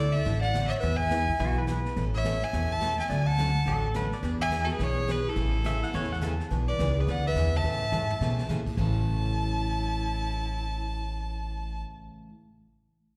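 Cheerful and playful, this short western swing clip from a longer country piece bounces along with a brisk, swung 4/4 feel, heard as a live gig through the venue's PA with light recital-hall reverb. A clear, focused fiddle carries the melody up front, its bowed tone boxy with light vibrato, while a breathy clarinet with a mellow, jazz-style subtone plays a second line beneath it. A bright, full-bodied picked steel-string acoustic guitar supplies the accompaniment and is the last to stop at 12.3 seconds, and the fiddle, clarinet and guitar each carry a slapback echo. A woody pizzicato upright bass sits up front, and a distant, roomy vintage brush kit with dark cymbals and a high-tuned snare stays in the background until 8.9 seconds, after a drum fill. Between 1.4 and 6.4 seconds a clean, compressed pedal steel guitar joins with a second line of slide and volume swells, moving over chords such as E, Aadd9 and Dmaj7 before the clip settles on A.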